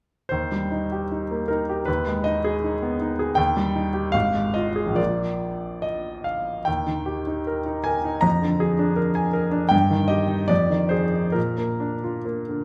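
A rubato 2/4 pulse drifting between 65 and 84 BPM carries this short romantic character piece for solo piano in Eb major, warm and lyrical in mood. A clear, intimate baby grand sits up front with its action noise audible, ranging from Ab1 to Bb5 and moving through a darkening Abm/Eb before settling toward Bb. The piano plays from 0.3 to 12.6 seconds in a recital hall whose reverb lends a soft, lingering bloom, and the passage is cut from a longer piece.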